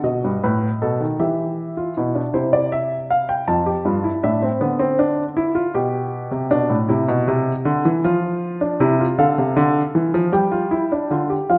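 An intimate, up-front baby grand piano, natural in tone with its action noise clearly audible, sits in a wet recital hall reverb. This joyful, lively classical passage is a baroque-style three-part fugue in 6/8 at 52 BPM in dotted quarters, played on solo piano from F2 to A5 and cut from a longer piece. Its harmony moves from B7 through Em, C and F toward Dm and G5 by 10.3 seconds.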